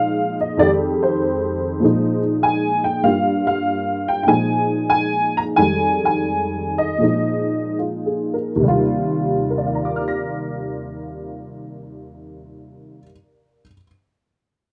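Solo jazz on a detuned, jangly honky-tonk upright piano with a woody, vintage character, swinging and relaxed in light reverb, circling between suspended and minor seventh chords as it slows from 3.0 seconds before settling onto an Eb69 resolution at 8.6 seconds in this short cut from a longer piece.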